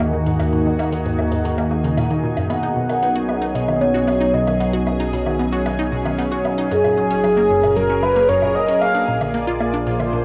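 Ambient, sequencer-driven space music at 114 BPM in 4/4, mysterious and cosmic, where a lush unison pad holds sustained chords over a warbling analog drone bass while a squelchy, resonant blip pluck cycles its phased riff with tape echo, electronic hi-hats and woodblock tick through overdrive, and a bubbling stepped-filter texture fades in throughout beneath a round, horn-like synth lead that carries the melody from 2.5 to 9.3 seconds as the chords move from D#m through Badd9 and F# to A#7, all captured in a wet room on cassette.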